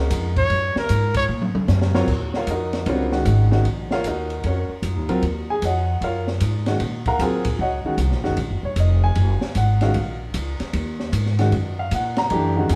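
Modal jazz with a searching, spiritual mood, swinging in four and cut from a longer piece. A trumpet with light vibrato and a warm jazz tone steps up front for a brief solo phrase from 0.4 seconds, coloured by plate reverb. A drum fill then carries the music from 1.3 seconds into a long stretch resting on an Ebm9 chord from 2.1 seconds. An upright bass sits close, played pizzicato on steel strings with a woody, growly, thumpy sound, while a grand piano with a smooth, vintage character accompanies up front. The acoustic drum kit sounds dark, with dusky cymbals, a high-tuned snare and a punchy kick, and the ensemble is heard from further back in a large studio with moderate reverb.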